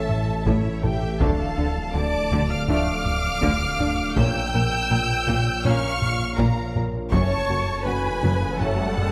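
Cinematic hybrid orchestral and electronic film score at 81 BPM in D harmonic minor, vast and brooding, where lush vibrato violin sections carry a focused high melody and second line over a rich studio viola section, a soft-attack cello section, very quiet double basses and a mellow, vintage French horn section entering at 1.2 s, while beneath them sit a beating detuned saw bass, a round analog bass riff, hard-stick taiko drums in a small room, an ominous rumbling drone with built-in reverb, a gentle pluck with chorus and tape echo playing background arpeggios, and an electronic riser from 8.1 s, as chords move from A through Dm and Bbm to F#m in a moderate scoring-stage reverb with lossy compression artefacts.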